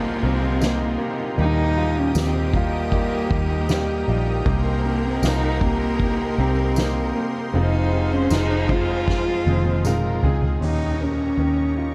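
A woody, bowed cello with vibrato carries the melody of this longing, heartbroken pop ballad at 78 BPM, over an intimate concert grand piano, a round, foam-muted electric bass up front, fingerpicked nylon-string guitar arpeggios, a lush, detuned pad with chorus, a smooth violin section with digital delay in the background, a soft-mallet drum kit that plays a fill from 9.1 seconds, a jingly tambourine and a very quiet electronic downlifter, all in a dark, warm production with light studio reverb that shifts to an Eb7 chord at 10.6 seconds.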